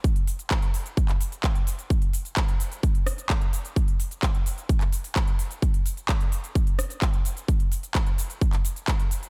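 A straight 4/4 pulse at 129 BPM drives this euphoric, emotional EDM excerpt, with a punchy, up-front electronic kick set against a layered big-room dance kit of handclaps, crisp hats, rim clicks and shaker, both drums carrying a tape-warm sheen inside a digital ambience for just over 9 seconds.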